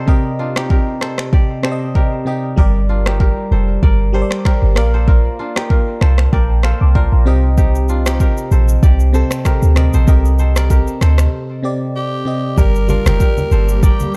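A deep, boomy 808-style bass enters at 2.6 seconds beneath an up-front afro-pop drum kit of finger snaps, kick, rim click and shaker in this sultry, mellow afrobeats excerpt at 96 BPM, where a glassy, bell-like FM electric piano with chorus and a crisp, fingerpicked kora riff with delay carry the Cm, Gm and Bb chords, a break arrives at 11.3 seconds, and a growling, breathy tenor saxophone solo appears at 12.0 seconds alongside low-tuned congas and a blurred granular cloud pad sitting in the background of a dark small-room mix.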